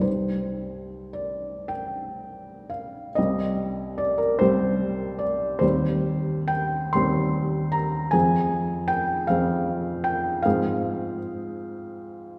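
In a rubato 6/8, this yearning, wistful romantic nocturne fragment for solo felt-muted upright piano sits soft, mellow and intimate up front, ranging from deep bass to high treble while a wet concert-hall reverb lingers around every note.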